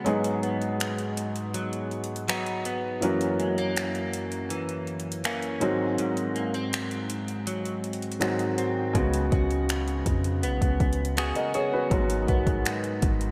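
A slow 81 BPM contemporary R&B groove in straight 4/4 sets a moody, late-night tone as finger snaps, metallic hi-hat and a soft kick from an electronic-sounding kit sit up front beside intimate concert grand piano accompaniment with audible action noise and clean, compressed electric guitar arpeggios carrying analog chorus and delay, moving through Abm7, Gb7 and Ab7 before a deep, boomy 808-style bass enters at 9.0 seconds under a Db7sus4, all soaked in a dreamy cathedral reverb in this excerpt cut from a longer piece.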